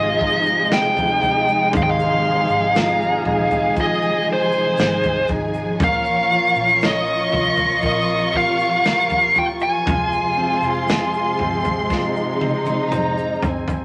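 A slow, emotional and hopeful pop ballad in Ab major at 59 BPM opens with a dark, distorted, bluesy lead guitar carrying the melody up front, over a close, vibrato-rich violin section, a clear, intimate grand piano with audible action noise, smooth bowed strings holding sustained chords and a round, foam-muted electric bass in the background. An airy country drum kit with a punchy kick enters at 0.2 seconds and a grainy, very quiet egg shaker at 0.5 seconds, before a drum fill from 11.9 seconds closes this short cut from a longer piece. The mix sits in a wet studio reverb with a layer of vinyl crackle, as the chords move from Ab6 to Bbm and Fmadd9.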